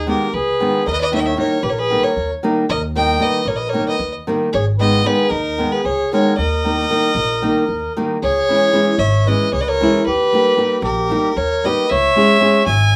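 A straight pulse of seven counts to the bar drives this short cut from a longer Balkan wedding-band tune, its mood bittersweet and restless. Up front, a single bowed fiddle carries the melody with a rich, earthy tone, light vibrato and a smooth top. Beneath it, a reedy, dark accordion with a round, tone-chamber voice plays the second line. A fingerpicked classical nylon-string guitar with fresh strings, also up front, fills in the accompaniment, while a pizzicato upright bass adds a woody, growly, thumpy low end. The harmony moves to a new chord and a new section at 8.2 s, and the whole piece has the feel of a rough home demo in a small room, with moderate studio reverb.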